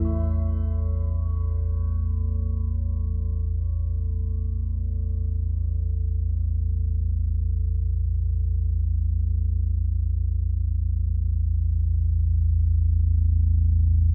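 Light reverb and a hint of studio ambience surround this desolate, ominous dark ambient drone, cut from a longer piece and tuned to A4 = 442 Hz. A deep, rumbling drone sits up front from 0.0 to 14.1 seconds, its detuned triangle and sawtooth tones warbling with a vintage, dark character, a slow attack and a long release, carried on its own built-in reverb. Much quieter, a bronze singing bowl struck with a wooden striker fades in across the whole 14.1 seconds, its metallic, airy ring showing slow beating. The bowl's bright, meditative shimmer sits faintly against the heavy low end, adding a thin gleam to an otherwise foreboding texture.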